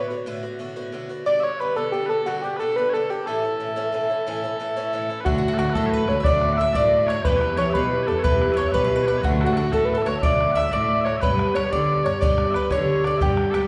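A soft, round synth lead with a keys-like chime, gentle vibrato and chorus carries the melody from the start, shadowed by sweet, mellow small bagpipes and a metallic, picked Irish bouzouki picking out chords from Bm7 through G and A. This lively, rollicking Celtic slide moves in 12/8 at 121 BPM, and at 5.3 seconds a bright, woody mandolin joins as a second line alongside a bowed, expressive cello bass with portamento and a boomy, open bodhran. The whole fragment of a longer piece sits in a wet recital-hall reverb with a soft, rolled-off top end.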